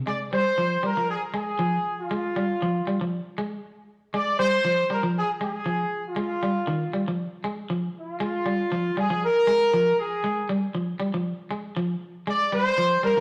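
This short excerpt of hypnotic, driving afrobeat opens with a punchy horn section and an electric guitar sounding together at 0.1 seconds, both running until the clip is cut off at 13.2 seconds. Set at 118 BPM in 4/4 with a light sixteenth-note swing, the music sits in Bb mixolydian over a single rootless Bb7 chord. The horns carry the melody between F4 and D5, sounding up front yet distant and roomy, with a pop-style ensemble punch. Beneath them, the guitar plays picked arpeggios in a low range from Eb3 to Ab3, its twangy tone sitting at the edge of break-up. The whole recording has the rough feel of a rehearsal room, with warm saturation and a wet stone-room reverb lasting 1.4 seconds.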